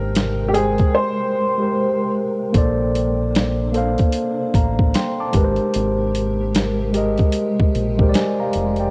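Swung sixteenths drive this mellow, dreamy lo-fi hip hop excerpt: an overdriven, muffled sampler-style drum kit with a thumpy kick enters at 0.2 seconds and drops out between 0.9 and 2.5 seconds, while a round, dark fingered electric bass sits up front, a clean tine electric piano carries the chords through cassette-tape haze, a woody upright piano with audible action noise plays a brief opening melody, and a blurred, detuned granular pad with built-in reverb drifts in the background of this home cassette recording.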